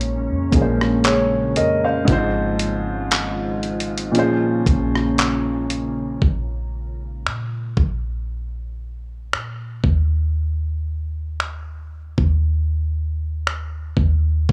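Moody and late-night, this slow contemporary R&B excerpt at 58 BPM in Bb minor opens with an intimate grand piano, its action noise audible, laying down Bbm9, Fm7/Ab and Bbm7 over a glassy, ethereal FM pad with ensemble chorus, built-in reverb and sidechain pumping in the background, until both drop out at 6.2 seconds to leave a deep, boomy sine 808-style bass and a dusty, compressed sampler-style kit of thumpy kick, hi-hat, rim click, finger snaps and handclaps carrying on up front through 14.5 seconds in a dry, gritty small room.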